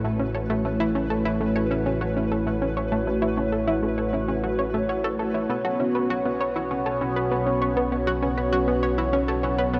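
Mysterious and cosmic, this short cut of ambient, sequencer-driven space music moves at 99 BPM in a straight 4/4, as a bright, resonant, detuned sweeping pad holds sustained chords from A6 to Bsus2 at 5.5 s alongside an up-front, round analog pluck riff carrying chorus and delay, a fat, saturated bass thickening the low end, and a pulsing, tempo-synced gated texture shimmering in the background, all bathed in a huge, wet reverb and the warbly pitch drift of worn cassette tape.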